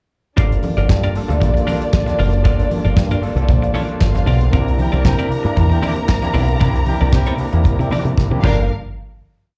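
Heard through a club PA with a light touch of room reverb, this short, complete disco piece has a sultry, glamorous mood, riding a Gm7 to C9 groove before ending on a final hit at 8.7 seconds. Up front, a dry, damped 70s drum kit lays down a four-on-the-floor beat with open hats on the off-beats, a fat snare layered with handclaps, a tight kick and a crash, while a quiet, ringing conga groove sits far behind. A punchy picked electric bass, run through an envelope filter, plays a syncopated line with chromatic approach notes. A clean, scooped semi-hollow guitar chops out sixteenth-note figures, an overdriven, barky tine electric piano adds syncopated rootless chords with grace notes and fast tremolo, and a mellow, round tonewheel organ holds a percussive pad in the background with chorus vibrato and slow rotary speaker. A dark studio string section draws long, expressive high lines with portamento, a distant, roomy horn section enters at 4.8 seconds with short riffs, and a drum fill at 8.2 seconds leads into the closing hit.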